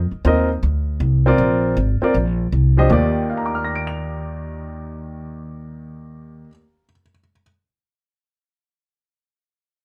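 A moderate studio ambience frames this short jazz excerpt, cut from a longer piece, with both instruments sitting up front in the mix. At 158 BPM in 4/4 with a swung eighth-note feel, the music has a sophisticated, swinging mood in E-flat major. An upright bass plucked on gut strings carries the low end with a woody, thumpy, dark tone, playing from the start until 6.4 seconds. A clear baby grand piano provides the accompaniment from 0.2 seconds, its natural sound marked by short sustain, and it carries on alone until 7.4 seconds. The harmony moves from F5 to Bb9, then settles on Ebmaj7 at 2.9 seconds as the second section begins.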